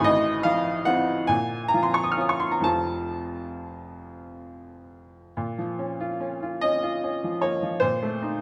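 A bright, up-front baby grand piano opens this wistful, yearning fragment of a romantic nocturne in B-flat minor, tuned to A4 = 435 Hz, moving in a slow, rubato 6/8 at roughly 43-52 BPM as its brilliant tone spans F1 to F6 over chords drifting from F over A through B-flat minor and F, with a new section arriving at 5.4 seconds, all set in a moderate recital hall reverb.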